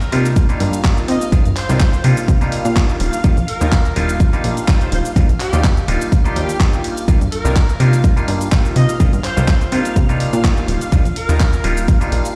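Sensual and funky, this filtered disco house cut moves at 125 BPM in C minor with a light 16th-note swing, shifting between Cm11 and Ebmaj9 while a punchy, tape-warm electronic kick sits up front and a house kit of handclaps, hi-hat and shaker pumps with sidechain underneath. A plucky sawtooth-and-square analog bass with a fast, decaying filter attack drives the low end, while an overdriven auto-wah clav through a combo amp, colored by phaser, adds stringy, percussive accompaniment. Overhead, a lush vintage string machine holds sustained chords in the background with ensemble chorus, and a mellow horn section with light vibrato carries the melody, all set in a bare stone room as if played on a big sound system.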